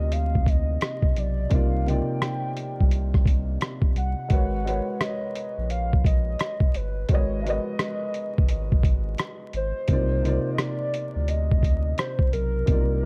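Reflective and melancholic, this lo-fi hip hop excerpt swings gently as a warbling, detuned lead with chorus, tremolo and vibrato sings a nostalgic melody over woody, intimate upright piano accompaniment with audible action noise, a thick, saturated sub bass and a muffled, compressed sampler-style drum kit of thumpy kick, hi-hat and rim click, all set in a dark production with vinyl crackle as the harmony moves from Cm11 to Abm11 at 4.3 seconds and back at 9.9 seconds.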